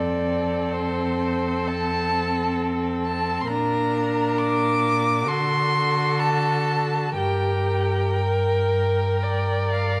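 Heard through a moderate concert-hall reverb, this slow, rubato classical movement for string quartet in G minor, cut from a longer piece at 58-68 BPM in 4/4, feels yearning and melancholic as a distant, warm first violin sings a smooth, even melody above a second violin's rich, expressive line with vibrato and portamento, a viola's rich, smooth and even accompaniment with vibrato and an intense, bright cello bass set up front, the harmony moving from F to Bb, then D7 at 5.3 seconds and G minor at 7.2 seconds.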